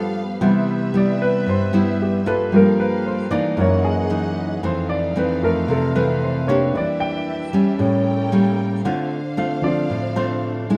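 A relaxed, sunny bossa nova opens at 114 BPM in a straight 4/4, with a nylon-string guitar, a concert grand piano and a symphonic string section all sounding together from the first moment of this short 10.8-second cut from a longer piece. The fingerpicked guitar sits up front with a full-bodied, deep classical tone, fresh strings and the occasional finger squeak. The piano, also up front and prominent, carries a solo across the whole passage with a smooth, vintage character and deep bass. Behind them, the bowed strings hold lush, expressive sustained chords with vibrato and a soft attack, set low in the mix. The harmony moves through Cmaj7, Gm9, F#13, Fmaj7, Em7b5 and A7b9 before settling on Dm7, all within a moderate studio ambience.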